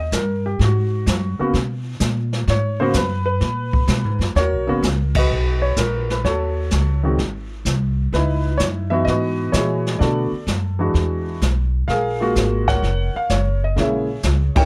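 Close, detailed miking and a dry, intimate room give this smoky, moody jazz piano trio cut a sense of sitting just beside the players. The concert grand carries the melody with a natural tone, deep bass and audible action noise, and it takes a featured turn over the opening 4.4 seconds before the harmony moves into rootless, extended minor colours and half-diminished chords. The pizzicato upright bass sits up front with a woody, steel-strung sound, while the brushed kit, swinging on the eighth notes, offers dark cymbals, a medium-tuned snare, a boomy kick and a rolled-off top from a small room. The whole trio lands together on accents at 5.1 and 14.5 seconds, and the passage, cut from a longer piece, closes on a half-diminished chord.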